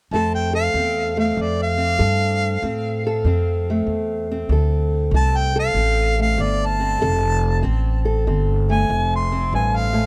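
Gritty and soulful, this short cut from a longer acoustic country blues piece rolls along in a swung 4/4 with an intimate, small-group feel. A clear harmonica carries the melody as a jazz-style solo from 0.1 to 10.1 seconds, its scooped notes and vibrato sitting close and up front, trailed by a touch of tape echo. Beneath it, a fingerpicked old ladder-braced acoustic guitar supplies the accompaniment with a dark, boxy tone. An upright bass, plucked on gut strings, anchors the low end with a woody, thumpy sound and sits slightly louder than the other parts. The room is dry and the microphones are close and detailed, so every part feels present and immediate over a single F chord.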